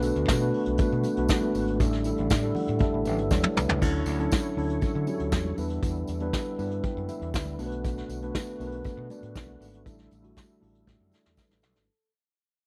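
Joyful and glamorous, this short disco cut at 119 BPM rides a mellow tine electric piano, a punchy overdriven fingered bass and a vintage brush drum kit with dark cymbals up front, while a percussive tonewheel organ with chorus vibrato and slow rotary speaker sits in the background, very quiet damped congas and a jingly tambourine add sparkle, a piano fill arrives at 2.3 seconds, and the dry, close small-room sound fades out from 3.8 seconds over chords moving from Bm7 through Dmaj9 and Em7.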